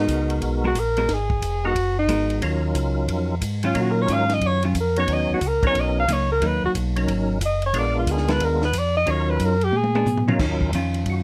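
A breathy alto saxophone with subtone and vibrato takes a bluesy, late-night solo from the start to 10.4 seconds in this soul jazz organ trio excerpt, sounding distant and roomy yet up front. A fat, percussive tonewheel organ with key click, chorus vibrato and slow rotary speaker carries a second melody line, while a mellow, round tonewheel organ through its own slow rotary speaker plays the bass. A vintage hollow-body electric guitar adds dark, clean, compressed accompaniment from 0.6 seconds, and a compact cocktail drum kit with a high-tuned snare and punchy kick swings beneath it all, playing a fill from 9.7 seconds, all under light reverb.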